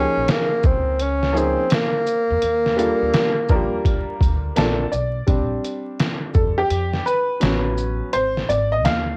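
A breathy, subtone tenor saxophone with scooped notes and light vibrato opens this relaxed, smooth jazz-hop excerpt at 84 BPM in Bb major over bright, short-sustained baby grand piano and woody pizzicato upright bass, joined at 0.3 seconds by a muffled, pitched-down, tape-colored sampler drum kit with a thumpy kick and swung 16th-note feel. The saxophone bows out at 4.6 seconds as the piano moves from a fill into a solo at 5.3 seconds over chords like Bb69, A69 and Ab6, all set in light reverb with vinyl crackle and a homemade cassette sound.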